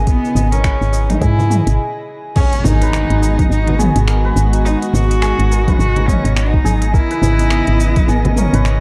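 Organic downtempo with a warm, earthy mood and a swung groove, built on a woody, round FM bass up front and a soft electronic kick, with a small-room electronic kit of crisp hats, cabasa, finger snaps, toms and crash, plus softly played ringing congas in the background. A bright, shimmering santur plays arpeggios through delay over sustained chords from a dark, intimate string section pumping in the background, while a glassy, drifting harmonics texture with chorus hovers faintly behind. A focused, richly vibrato cello carries the melody, and after a brief break at 1.8 seconds a very quiet electronic impact lands at 2.4 seconds.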